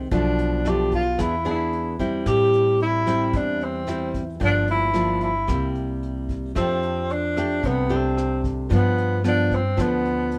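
Bossa nova at a relaxed, breezy 112 BPM in straight 4/4, this short passage is cut from a longer piece and moves through Bm7b5, E7 and Am7 before shifting to Gm7, C7, F69 and G7. A breathy tenor saxophone carries the melody up front from 0.1 seconds, its subtone voice intimate and whispered, with soft attacks, scooped notes and vibrato. The fingerpicked nylon-string guitar sits close as well, full-bodied, with fresh strings and an audible finger squeak. A pizzicato upright bass adds a woody low end. Brushes on a vintage kit supply hi-hat, rim click and a punchy kick, with a dark, rolled-off top in a small room, and light reverb wraps the whole performance.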